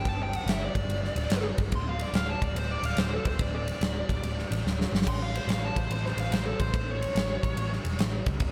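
A swung 144 BPM groove in 4/4 drives this raunchy, gritty slice of blues rock and southern rock, cut from a longer piece, with a huge, up-front arena drum kit pounding a punchy kick, medium-tuned snare and bright crash and ride cymbals in a pumping room, and a drum fill at 4.6 seconds. A vintage foam-muted picked electric bass holds down the low end with a round, amped tone, while a dark, smooth lead guitar solos over G5, D5 and A chords, its picked line overdriven and carrying a slapback echo until it drops out at 7.7 seconds. A lush hall reverb and small room ambience give the trio a big arena sound.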